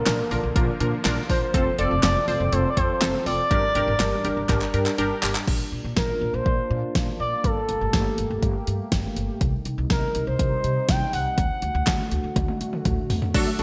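A smooth, expressive synth lead sits up front with the melody in this melancholic, cool synth-pop excerpt, its dark sawtooth-and-triangle tone shaded by vibrato, chorus and digital delay. Under it, a layered deep house drum kit of deep kick, fat snare, handclaps, hi-hat, toms and crash cymbal sounds tape-warmed and close, with gated reverb and a drum fill to close each section. A pizzicato upright bass with steel strings supplies a woody, thumpy low end, while a bright, evolving resonant pad holds sustained chords with slow filter swells. A funky, punchy polysynth comp with a sub octave plays until 5.4 seconds and returns briefly at the end, when a mellow, wave-folded unison pluck slips in at 13.3 seconds with background arpeggios. The chords move from Bb through F and Gm to Cm and D, set in a moderate, lush hall with bright 1980s-style digital production.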